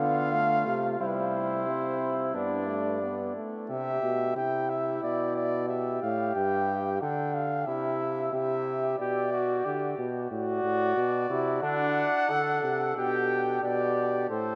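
Bathed in a vast, echoing cathedral reverb, this fragment of an elegant, joyful classical canzona for brass moves at 90 BPM in 4/4, with a dark trumpet carrying the melody up front with vibrato over a mellow, distant flugelhorn second line and a clear, roomy bass trombone anchoring the low end, while a brilliant trombone accompaniment drops out at 3.7 seconds.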